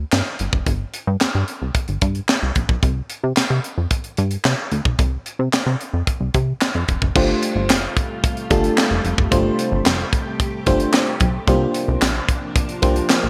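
A punchy, plucky analog bass drives this danceable, slick early-eighties boogie funk excerpt in G minor at 111 BPM, riding up front with a tight funk drum kit whose high-tuned snare, handclaps, hi-hat, crash and kick sit close in a small-room sound. At 7.2 seconds a glassy FM electric piano with bell-like attacks and chorus joins over suspended chords, and just after, a silky, soft string machine adds sustained chords through phaser and ensemble chorus. The bright digital production places it all in a moderate plate reverb.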